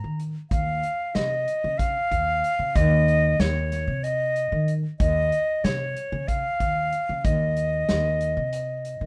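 Driving and brooding, this progressive instrumental excerpt in 7/8 at 187 BPM pairs an airy, straight-toned silver concert flute carrying the melody with a woody, thumpy pizzicato upright bass on gut strings and a dark, smooth natural country drum kit with tight kick, hi-hat and medium-tuned snare, all up front in light reverb over a rootless Dbmaj9/Eb chord.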